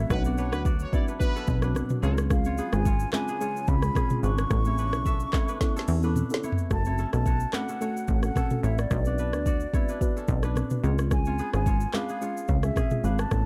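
The rhythm comes from an electronic afro-pop drum kit at 109 BPM in 4/4, with a lightly swung sixteenth feel, a deep kick, woody snare, metallic hats, handclaps, rim clicks, shaker and toms, joined by very quiet, high-tuned congas played with soft hands. This sultry, smooth afrobeats passage is cut from a longer piece, and a punchy, funky analog bass with a fast, decaying filter pluck sits up front beside the drums. A crisp, fingerpicked kora rings through a riff while a soft, round synth pluck with chorus adds gentle accompaniment, and a deep, moody ambient pad holds detuned chords beneath them until 6.7 seconds. An airy, hollow silver concert flute carries the melody with vibrato and tape echo, and a loose pop-style horn section adds a brief second line that stops at 2.1 seconds. A drum fill leads into the second section at 6.7 seconds, where the harmony moves through F#m, Bm and C# within a dark production.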